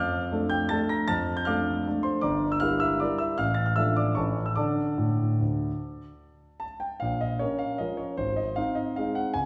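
A rubato 3/4 lilt swaying between 142 and 165 BPM carries this wistful, bittersweet classical piano waltz in D minor, tuned to A4 = 444 Hz, where a solo concert grand with a deep, natural bass sits up front yet is heard from further back in a wet recital hall with a 1.7-second reverb, its harmony moving through D minor and A major before shifting at 7.0 seconds toward B-flat minor and A-flat in this brief fragment cut from a longer piece.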